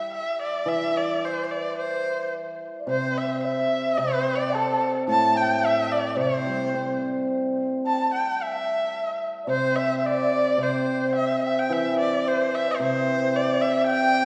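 A lush concert hall reverb wraps this graceful, festive Chinese chamber ensemble piece, heard from further back in the room, with a long, wet tail that lets the notes bloom. It is a short cut from a longer work in a free, rubato 2/4 feel. A single bowed erhu carries the melody up front, its warm tone shaped by vibrato, portamento, soft attacks and expressive phrasing. Beside it, an acoustic hammered dulcimer supplies the accompaniment in its lower register, its shimmering, ringing strikes also close in the mix. At 2.8 s an end-blown bamboo xiao enters in the background with a second line, breathy and mellow, with vibrato and rolled-off highs. The opening material returns at 11.7 s, and all three instruments play through to the end at 14.2 s.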